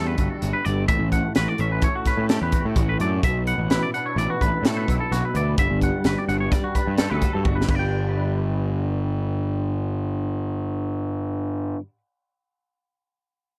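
An overdriven, round fuzz bass sits up front in this bright, intricate math rock and midwest emo cut in 5/4 at 128 BPM in G lydian, driven by a crisp, punchy fusion kit with a high-tuned snare in a small pumping room that plays a fill at 7.5 seconds and stops at 7.8 seconds, while two clean, fingered electric guitars, a twangy chorused accompaniment and a scooped arpeggio line above it, ring through Gmaj9, A13 and Bm11 chords in a dry mix.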